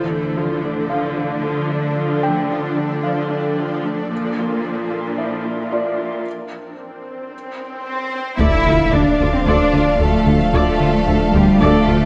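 Cinematic hybrid orchestral and electronic film score in D minor at 112 BPM, vast and futuristic, where a rich viola section, a blurred granular cloud pad, an up-front woody cello section and a round sub bass build beneath a soft felt-muted upright piano with delay from 0.9 s. A filter sweep, a break and an electronic swell give way to an impact at 8.4 s, as lush violin lines entering from 7.9 s, very quiet horn and trombone chords, a dark tuba, double basses and a rubbery square-wave bass riff fill the dark, reverberant scoring-stage sound.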